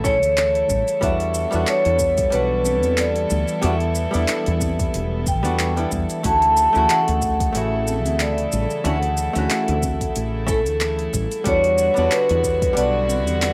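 Sunset chillout at 92 BPM in D major, this relaxed, swung excerpt from a longer piece sets a ringing vibraphone melody, played with medium hard mallets and motor off and carrying digital delay and plate reverb, over a dark, clean hollow-body jazz guitar and a floating sul tasto chamber string section bowing sustained chords. Beneath them, a growly, round fretless bass anchors the harmony as it moves from Dmaj7sus2 through Em9 and Dmaj9, while a deep house kit with metallic hats, handclaps and shaker plays alongside a deep electronic kick that stops at 12.7 seconds. Soft-handed congas sit in the background, and the whole thing has the loose, roomy feel of a rough home demo.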